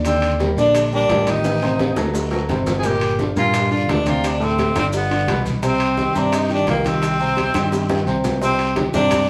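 A breathy tenor saxophone sits up front, carrying the melody with a whispered, intimate pop-style tone, soft attacks, scooped notes and vibrato over this driving, fiery salsa cut at 172 BPM in C minor. Beneath it a clear baby grand piano comps with an open, slightly worn sound and long sustain, moving through Ebmaj7, Am7b5, D7, Gm7, Dm7 and G7 before landing on Cm. A round, dark fingered electric bass anchors the low end with a direct, amped tone. The percussion sits in the background: ringing metal-shell timbales, tight high-tuned bongos struck with hard hands, raspy guiro, grainy maracas, and very quiet low-tuned congas played with soft hands. Drum fills arrive at 1.4 s and again at 7.7 s. The band sounds as if playing live in one small room, wrapped in a wet studio reverb.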